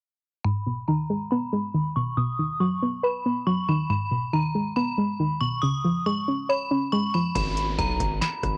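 Menacing and melancholic, this half-time trap excerpt opens at 0.4 seconds with a ringing, inharmonic FM bell carrying the melody over a soft, round pluck whose dark chords sit under chorus, a low-pass filter and cassette-tape coloring while a filter sweep runs through the passage. At 7.4 seconds the pluck drops away as a booming analog drum machine, with its deep kick, crisp snare, rim click and metallic hats, arrives alongside a punchy, saturated 808-style bass and a faint downlifter. The whole piece has the light reverb and lo-fi character of a home cassette recording.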